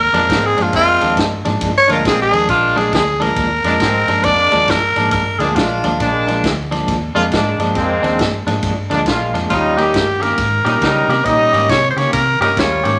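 A wet club reverb surrounds this gritty, laid-back electric blues shuffle excerpt, where a raspy, growling tenor saxophone sits up front, taking a solo from the start, dropping out at 6.0 seconds and returning at 9.5 seconds as the harmony moves from Bb7 to Eb7. Underneath, a dark, round foam-muted electric bass and a twangy, compressed clean guitar riff with tremolo carry the groove, while a brilliant horn section adds tight stabs with light vibrato. A vintage acoustic drum kit with a punchy kick, ride cymbal and medium-tuned snare keeps the swinging shuffle feel in a natural studio room.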